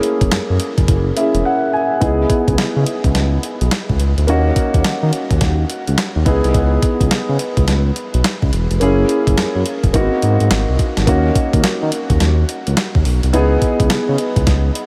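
A smooth, sawtooth-edged synth bass with ring modulation and vibrato sits up front in this punchy, slick new jack swing R&B cut in C# dorian at 106 BPM, alongside a dark grand piano with audible action noise and subtle chorus, and a crisp 8-bit drum machine with thumpy kick, fat snare, hi-hat and handclaps that drops out from 1.4 to 2.0 seconds beneath a piano fill, all over swung 16ths, chords moving from F#7 through C#m7, D#m7 and G#7, and a dreamy mix soaked in a huge ambient reverb.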